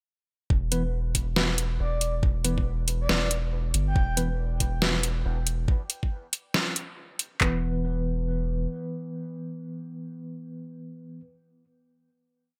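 A round, up-front sub bass anchors this brief, heavy and dark deep dubstep piece at 139 BPM in E minor, set against a swung half-time beat of knocking kick, claps, deep snare and metallic hats, while sparse tine electric piano chord stabs with medium tremolo and dub echo carry on into a final chord from 7.4 seconds, and a breathy, flute-like synth lead with subtle chorus and vibrato surfaces between 1.8 and 4.2 seconds, framed by light reverb and bright 1980s-style digital production.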